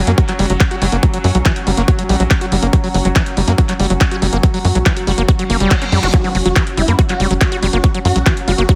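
Driving and hypnotic, this psychedelic trance excerpt runs at 141 BPM in F# major, with a punchy, up-front electronic kick and a layered big-room dance kit of handclaps and hi-hat. Underneath, a tight sequencer bass gives a nasal, saturated sawtooth pulse, while an overdriven acid bass riff adds squelchy, gritty grit with sidechain pumping and dub echo. In the background, a bubbling stepped-filter texture holds sustained chords with random resonant filter steps, beside a warbly, lo-fi, nostalgic tape-like pad that sits dark and vintage, both carrying chorus, reverb and pumping. A very quiet resonant blip pluck supplies a bright, juicy second line. A reverse cymbal and zap sweep in at 5.5 seconds, and at 6.1 seconds a swarming, aggressive rave lead enters with detuned unison, phaser, chorus and portamento. The whole mix has a heavily compressed, radio-like digital sound.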